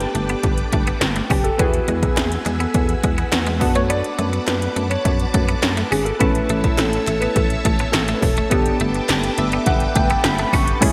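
Punchy 80s electronic pad drums sit up front with a gated snare and metallic hats, driving this romantic, uplifting 1980s-style pop excerpt at 104 BPM in a straight 4/4 over a Gadd9, Eadd9, D6/F#, A progression. A round FM bass anchors the low end while an intimate concert grand piano with audible action noise carries the melody through analog chorus. Glassy digital keys with chorus supply accompaniment and a fill from 9.1 seconds, a vintage string machine holds lush sustained chords through phaser and ensemble chorus, a twangy clean electric guitar riff enters at 0.2 seconds in the background, and a very quiet group handclap joins at 2.2 seconds, all set in a moderate, lush hall reverb with bright digital production.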